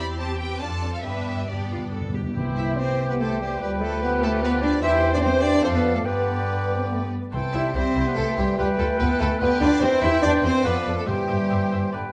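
A spirited, graceful classical-period symphonic movement in triple time, cut from a longer piece, moves with flexible rubato as a lush violin section carries the melody over a rich second violin line, distant background violas, focused cellos and close, expressive double basses. Timpani played with medium mallets add a fill from 1.1 seconds, and from 2.4 seconds a pure, tongued flute, a smooth-topped oboe and a mellow bassoon enter, soon joined by a roomy clarinet and a dark French horn section holding sustained chords. The whole orchestra sits in a moderate recital hall reverb.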